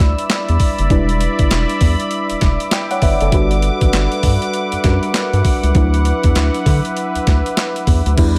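A gritty, sampler-style boom bap drum kit sits up front in this short, bouncy new jack swing cut, its thumpy kick, medium-tuned snare, handclaps, hi-hat and crash cymbal all compressed and punchy over a swung 4/4 groove. Beneath it, a round analog bass built from square and sine tones stays deep and dark, holding its notes with a fast attack and an evolving character. A mellow FM electric piano supplies the accompaniment with a soft, vintage tone, its chorused, warbling notes decaying over a faint noise layer. Above it all, a resonant sawtooth pad holds sustained chords, its detuned, slow-attack sound shaped by a filter swell and chorus. The harmony moves from Em7 to Gmaj7 at 3.3 seconds and settles on D69 at 5.8 seconds, and the dry, close sound keeps the R&B feel tight and immediate.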